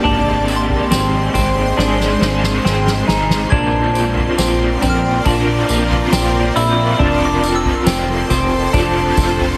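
Dream pop with an ethereal, blissful mood, this passage is cut from a longer piece and moves in a straight 4/4 through Ab, Bbadd9 and F chords. A semi-hollow electric guitar plays dark, clean fingered arpeggios dressed in lush chorus and delay, while a double-tracked garage guitar adds overdriven, lo-fi accompaniment with tremolo and ensemble chorus. A shimmering ambient pad holds detuned, granular chords with an octave-up sheen and slow attack, and a soft FM synth bell sits in the background with phaser and delay. Underneath, a plucky analog bass gives punchy, funky notes with a fast attack, and a soft-mallet drum kit with a boomy kick, fat snare, tambourine and toms plays a fill from 1.8 to 3.5 seconds. The mix sits in a moderate, lush hall reverb and carries a heavily compressed, radio-like sound.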